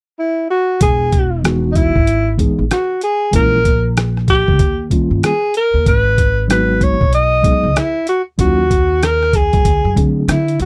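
Smooth and mellow, this jazz-hop excerpt moves at 95 BPM with a 16th-note swing in E major, as a breathy, whispered alto saxophone with vibrato and scooped notes leads from 0.2 seconds, joined at 0.8 seconds by a woody pizzicato upright bass and a gritty, pitched-down boom bap drum kit of thumpy kick, hi-hat and rim click, then at 1.4 seconds by a clean tine electric piano playing chords from Emaj7 through G#m7 to D7#11, all in a dry, close 1970s-style studio sound.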